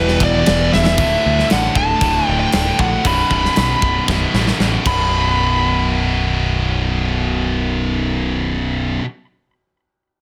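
A straight, relentless 4/4 drive opens this heavy metal excerpt, with a tight acoustic drum kit of kick, snare, hi-hat, ride and crash cymbals ringing in a big room. In the first moment, a very quiet, dark string section adds woody, lush bowed chords with vibrato, while a double-tracked fuzz guitar thickens the riff in the background; both drop out at 1.0 seconds as the harmony moves from E minor to D and B power chords. Underneath, an overdriven, picked electric guitar and a scooped high-gain guitar play the low riff, joined by a growling, overdriven picked bass that sounds both direct and amped. Above them, a high-gain lead guitar with a shadowy distorted tone carries the melody throughout. The drums play a fill from 4.1 seconds and stop at 5.0, leaving the guitars and bass to press on in a heavy mix with light reverb.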